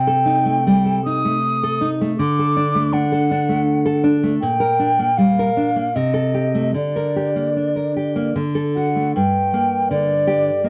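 Yearning and melancholic, this short passage from a longer romantic duo for flute and classical guitar moves in a rubato triple metre. A silver concert flute carries the melody with a hollow, pure tone, its tongued notes shaped by vibrato and set close to the ear in a plate reverb. Beneath it, a fingerpicked nylon-string guitar plays a full-bodied, up-front accompaniment, with finger squeak audible. The harmony moves through Am7b5/C, D and Gm/Bb before a brief new section arrives at 9.2 seconds and settles on Gm. Both parts play throughout, framed by a moderate studio reverb and a dark, warm production with vinyl crackle.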